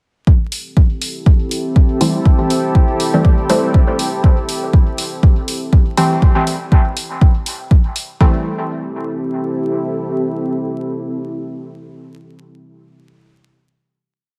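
Dub techno at 121 BPM in A minor, this short, complete piece has a deep, hazy mood, with a gentle 16th-note swing and tuning that sits slightly below standard pitch. A punchy four-on-the-floor electronic kick sits up front from 0.3 s and carries the groove to about 8.2 s, joined by dark, open programmed hi-hats mixed well back. A deep, moody sawtooth pad with a sub octave and wave-folded, ring-modulated edges enters at 1.0 s, holding sustained chords on Am7 through chorus and its own reverb while sidechain pumping makes it breathe with the kick. From 2.0 s, sparse, muted chord stabs with a detuned, filtered pluck move one shape in parallel, passed through chorus, phaser and dub echo, again pumping against the kick. After the beat drops out, the pad and stabs ring on a final chord until the end at about 12 seconds, all over a light reverb and a prominent bed of vinyl crackle.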